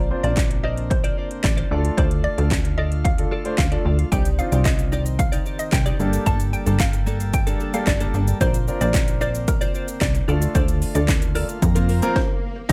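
This upbeat, euphoric dance-pop excerpt in Bb major at 112 BPM opens at once with a woody, round mallet-like synth pluck carrying the melody through chorus and digital delay. Beneath it sit a full pipe organ holding sustained chords in the background, a bright, clean direct-recorded electric guitar riff with analog chorus, a punchy, funky analog bass, and a polished baby grand piano with long sustain, the organ, bass and piano all pumping with sidechain. A punchy, overdriven house drum kit sits up front with cracking snare, metallic hats, claps and shaker, a very quiet electronic swell enters at 11.2 s, and the music breaks into a stop at 12.2 s over light reverb.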